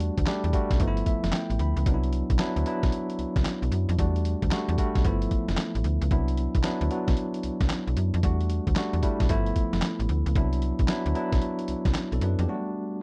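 Punchy and bouncy, this new jack swing R&B excerpt rides a swung 16th-note groove at 113 BPM in 4/4. A boom bap sampler-style drum kit of kick, snare, hi-hat and handclaps sits up front, compressed and pitched down with a thumpy kick, a medium-tuned snare and a tape-warm, gritty 12-bit sampler character. Alongside it, a slap-like FM bass with a snappy, metallic attack and a digital, decaying tone holds the low end, while a bell-like tine electric piano with a bright, clean sound carries the accompaniment and plays a short fill from 0.8 to 1.9 seconds. The harmony cycles through Em11, G13 and Cmaj9#11. At 12.5 seconds the drums and bass drop out, leaving the electric piano alone on a rootless Em11 for a brief break. The sound is dry and close, in the manner of a 1970s studio recording, with little reverb.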